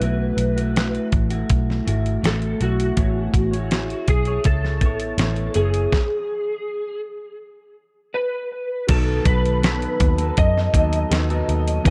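A straight 4/4 groove at 81 BPM comes from a gritty, compressed sampler-style drum kit up front, with a thumpy kick, fat snare, hi-hat and crash, over a round, foam-muted picked electric bass that sits dark and forward in the mix. This short slice of a longer indie and bedroom pop piece feels dreamy and laid-back. An electric slide guitar carries the melody, fingered and slightly broken-up, with ensemble chorus and analog delay. Beneath it, an electric guitar played through a small old amp plays picked accompaniment, its compressed tone colored by analog chorus and a warbly pitch drift. The harmony moves from B7sus4 to Amaj9 before a stop at 5.9 s, and at 8.9 s the music lands on B7 as a woody, intimate upright piano enters in the background, its action noise audible. The whole production is dark and warm, wrapped in digital ambience.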